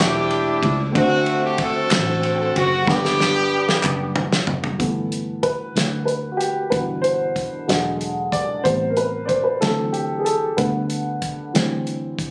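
A phone-in-the-room recording with club reverb captures this soulful, reverent slow gospel excerpt in G major at 62 BPM in 6/8, where a clear, tight horn section with light vibrato carries the melody and crisp group handclaps sound alongside it until about 4 seconds, a dark, woody upright piano sits up front and takes a solo from 4.8 seconds, a round, foam-muted fingered electric bass holds the low end, and a soul drum kit with a fat snare, tight kick and dark cymbals plays a fill just before the piano solo, over chords moving from A7sus4 and D7 to Gmaj7, then through E7, Am9 and D7 to a closing D9sus4.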